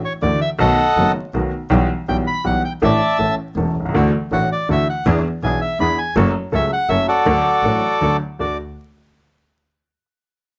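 Elegant and nostalgic, this rubato tango in 3/4 is led by a reedy, vintage, band-limited bandoneon melody up front, with a woody, slightly detuned upright piano ringing with long sustain and a biting, bowed double bass with light vibrato underneath. From 3.9 s, a second bandoneon adds soft stabs in the background, its tone set in a boxy small room. The close, detailed, nearly dry sound carries a layer of vinyl crackle, and the passage is cut from a longer piece.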